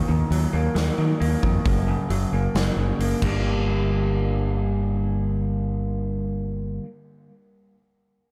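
An up-front, twangy electric guitar through a small old amp picks slightly broken-up, compressed arpeggios bathed in lush chorus and analog delay, opening this brooding, cathartic fragment of quiet-loud alternative rock in G harmonic minor at 134 BPM. A round, fingered electric bass sits close beside it, while a huge arena drum kit with a punchy kick and a medium-tuned snare drives the first stretch and drops out at 3.3 seconds, just after a fill at 3.2 seconds. The chords move from Ebm to F# to Gm in a dry, close-sounding mix.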